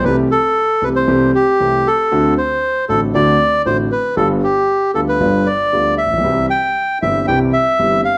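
Rubato 4/4 at 116 BPM gives this short tango in C major a loose, playful yet nostalgic sway, moving through Am7/C, D7 and G7 before settling on C at 6.2 seconds. A reedy, smooth bandoneon carries the melody between G4 and G5, up front beside a concert grand piano whose accompaniment, with deep bass and a vintage character, reaches down to G1 and stops at 8.0 seconds. A moderate large-studio reverb and a dark, warm production round out the sound.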